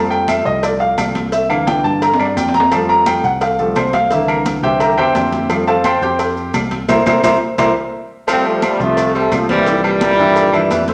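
A clear, up-front concert grand piano carries this festive, danceable salsa excerpt at 173 BPM in F major, taking a solo in the spotlight over a round, punchy fingered electric bass while the band hits accents and drum fills before 8.3 seconds. Behind it sits a percussion bed of close, dry, ringing metal-shelled agogo bells and timbales, high-tuned congas, a tight cowbell and grainy, mellow maracas, along with woody claves heard in a small room. At 8.3 seconds a bright, tight trombone section with light vibrato takes the melody up front, joined by a present, vibrato-laden baritone saxophone on a second line, all bathed in a large studio reverb.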